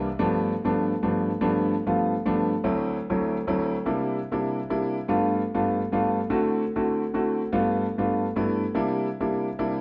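A live, stone-walled room wraps this short jazz fragment in a damp, lingering reverb, while the solo concert grand sits up front and close enough that the action noise of the keys is plainly audible. The piano plays alone from 0.0 to 9.8 seconds, staying in its lower and middle register, and its deep bass gives the sound a rounded, natural weight. The harmony moves through rich ninth chords, G9 to D9 to C9 and back, with a fresh pass through the same material beginning at 7.5 seconds. The straight, steady pulse keeps the mood danceable, while the extended chords lend it a sophisticated, intimate polish.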